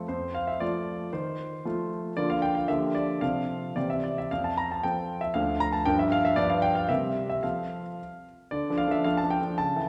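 Cheerful and graceful, this classical-period piano sonatina in F major moves at about 109-118 BPM in 2/4, with a rubato feel, and is a brief passage cut from a longer piece. A clear grand piano plays solo across a range from D2 to Bb5, its intimate, present tone carrying audible action noise, while a wet recital hall reverb places the listener further back in the room. The opening section moves through F, Bb/D, Gm7, C7 and back to F before a new section begins on Dm at 8.5 seconds.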